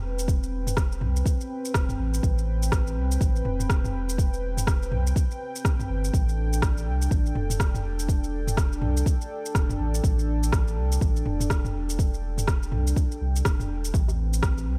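Afro house with a hypnotic, spiritual mood, this excerpt rides a 4/4 groove with swung sixteenths, moving from Am9 to Gsus2 at 6.1 seconds and back to Am9 at 13.9 seconds. An up-front, tape-warm electronic kick anchors a layered deep house kit of rim click, shaker and toms, while a round sine sub bass and a dark, smooth sawtooth pad with chorus both pump against the sidechain. Near the close, at 13.9 seconds, a tight, cracking djembe played with soft hands sits in the background, trailing dub echo through an echo-heavy mix.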